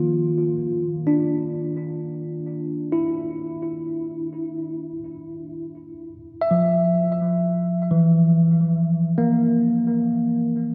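A lush hall reverb with a long 3.0-second decay bathes this dreamy recording, giving it a soaked, floating quality. It is a short ambient excerpt in free time and G dorian, tuned to A4 = 443 Hz, with a serene, reflective mood. A lone tine electric piano carries everything, sounding clean and up front through a combo amp, colored by a subtle chorus and a tape echo. Ranging from Eb3 to E5, it opens on a Dsus2 chord at 0.3 seconds before shifting to a rootless Gm7 at 5.9 seconds. The passage is cut from a longer piece, and the piano plays alone until it stops at 10.7 seconds.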